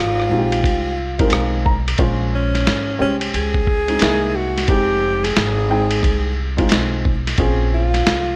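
A 89 BPM groove in 4/4 with a 63% 16th-note swing drives this short, nocturnal jazz-hop clip in B-flat dorian, cut from a longer piece and running about 8.4 seconds. The lo-fi sampler-style drum kit sits up front, pitched down, compressed and muffled, with a thumpy kick, a medium-tuned snare, rim clicks, hi-hat and ride cymbal that carry the ambience of a large room. Beneath it, a woody, gut-strung upright bass plays pizzicato low in its range, while a dark upright piano adds mellow, intimate accompaniment with audible action noise, short sustain and a vintage character, slipping in a brief fill at 1.0 seconds. Over the top, a breathy alto saxophone takes the solo melody in a cool jazz style, using subtone, vibrato and scooped notes. The harmony moves from Fm7 to Bbm7 and through a C7alt back to Fm7 and Bbm7, and the dry sound, with little reverb and some lossy compression artefacts, adds to the late-night, lo-fi feel.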